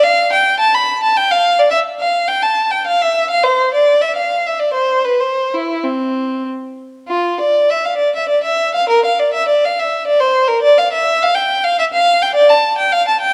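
In a rubato 3/4 that drifts between 95 and 108 BPM, this flowing, serene fragment of a baroque-style suite movement for unaccompanied violin features a single bowed violin, rich, smooth and even with vibrato, played up front in a moderate recital-hall reverb, moving from C major to F major at 7.1 seconds as its line spans C4 to B5.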